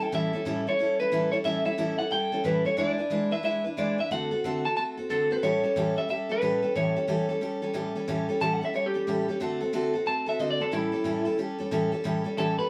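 A live band sound in a modest studio room opens this upbeat, rollicking swung rock fragment, with both guitars up front. A twangy, slightly broken-up electric guitar through a small old amp carries the melody over a full-bodied jumbo steel-string acoustic that picks out the accompaniment through A7, E7 and D7 changes. At 8.1 seconds the electric guitar moves into a clean solo, which runs until the cut at 12.7 seconds.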